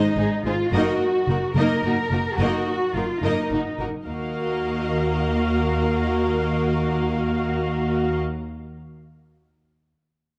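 In a straight 6/8, this dark, heroic cinematic string passage, cut from a longer piece, places a rich, smooth violin section on a second line while lush bowed violas accompany, while an up-front cello section carries the bass with a warm, even vibrato and expressive, close double basses join at 0.2 s, set in a moderate recital hall reverb with a dark production.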